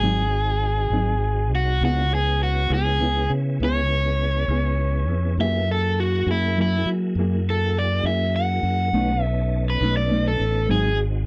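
Dark, warm production with light reverb frames this swaggering, rollicking blues, cut from a longer piece, moving at 68 BPM in a straight 12/8 over G#7, C#m7, F#9 and B9, where a crunchy, picked overdriven guitar solos up front throughout, a clean, fingered electric guitar adds mellow accompaniment with tremolo, a smooth tonewheel organ holds sustained chords through chorus vibrato and a fast rotary speaker, and a growly, direct fingered bass sits prominently beneath.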